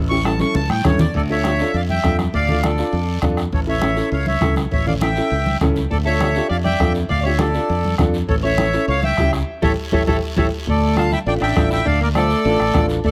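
A punchy, bright fingered electric bass and a reedy, close-miked accordion carrying the melody with tape echo open this danceable, passionate cumbia excerpt at 202 BPM in D harmonic minor, where a woody upright piano with audible action noise, damped congas set in the background, a raspy guiro and a soft-beater vintage bombo join within the first second and a drum fill leads in at 0.5 seconds, a slightly broken-up fingered electric guitar adds a second line from 5.9 seconds, and a band accent at 9.5 seconds sets up the return to D minor under light reverb.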